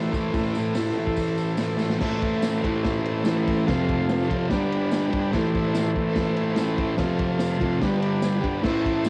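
Menacing and gritty, this short cut from a longer garage rock piece drives along at 145 BPM in a straight 4/4, centred on A minor. A thick, dark fuzz guitar, double-tracked and up front, carries the low riff throughout, while a buzzy, overdriven vintage combo organ with light vibrato holds sustained chords above it. A crunchy breakbeat drum kit with a tight kick, a medium-tuned snare and dark, rolled-off cymbals sits saturated in the mix, joined by a jingly tambourine tucked in the background. A drum fill at 1.8 seconds leads into the next section at 2.0 seconds, where the harmony moves from Am through F and G before returning to Am and cycling again. The home recording on cassette is framed by moderate spring reverb and a small room ambience.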